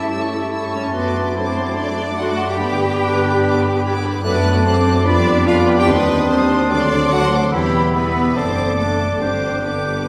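A symphonic violin section carries the melody in a high register, its lush, vibrato-rich tone focused and smooth at the top, in this spirited, cheerful passage from a fast romantic movement in G major at 145 BPM, played with a flexible rubato feel. Around it, a second violin section, a clear solo clarinet, a roomy, distant oboe and an airy, crisp-edged flute ensemble set back in the mix weave supporting lines. A mellow bassoon and a smooth, distant viola section fill in the accompaniment, while a dark, tight French horn section holds very quiet sustained chords and a concert harp rings out gentle fingerpicked arpeggios. The close, full-bodied cellos and the even, distant double basses anchor the bass, the cellos standing out as the strongest voice in the texture. The harmony moves from A7/G through D7/F# to G, with a brief turn to Cm/Eb before resolving home, and the whole 10-second extract sits in a reverberant concert hall acoustic.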